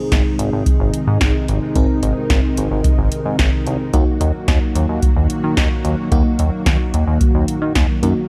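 A dry, up-front electro analog drum machine drives a straight 4/4 pulse with a deep kick, punchy snare and metallic hats, joined by a glossy, nasal chorused synth bass with pulse-width modulation and a filter pluck. Above them, a dreamy FM electric piano with a soft pad layer, treated with chorus and phaser, and a vintage string machine voicing cellos in sustained, mellow chords give this nostalgic yet bright synth-pop fragment its lush character. The harmony shifts from Ab to Ebm at 3.9 seconds, within a digital ambience.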